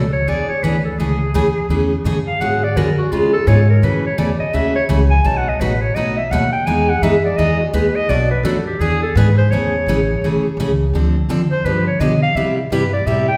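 Acoustic string swing in the jazz manouche style, this charming, lively passage is cut from a longer piece and moves with a swung eighth-note feel. A breathy clarinet takes the solo from 0.0 s to 13.4 s, sitting up front with vibrato, scooped notes and a smooth top to its jazz phrasing. Beside it, a picked steel-string acoustic guitar with a full-bodied jumbo tone, also up front, carries the accompaniment through changes such as E7, Amaj7, G#m7b5 and C#7. Underneath, a pizzicato upright bass on gut strings gives a woody, dark, thumpy foundation. The players sit in a wet recital hall reverb that suggests a church or concert hall, and the harmony turns toward Dm7, G7 and Cmaj7 as the second section closes at 13.4 s.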